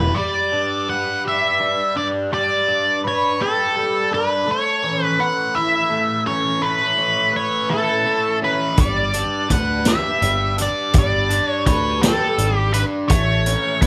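A distorted, up-front octave-fuzz lead guitar with wah carries the melody over a bright, double-tracked crunchy overdriven guitar riff washed in phaser, opening this trippy, dark psychedelic rock excerpt in 6/8 at 56 BPM as the chords move from G to Aadd9, and at 8.8 seconds a round picked electric bass and a punchy vintage drum kit of hi-hat, kick and snare settle in, the band playing live in one room with light reverb.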